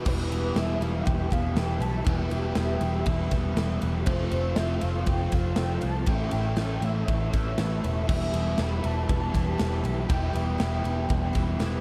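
A hazy, lightly reverberant mix opens this brooding shoegaze and dream pop fragment at 120 BPM in E phrygian, where a punchy, big-room rock drum kit with bright cymbals and a round, foam-muted vintage bass sit up front. Behind them, a dark, compressed overdriven electric guitar and a hollow-body overdriven semi-hollow guitar with reverse reverb play riffs, while a very quiet, shimmering twelve-string acoustic guitar adds octave-doubled arpeggios. A velvety, detuned synth lead carries the melody with chorus, vibrato and tape echo over a silky string machine's phased, sustained chords, all moving from Em through F and Aadd9 before returning to Em at 8.1 seconds.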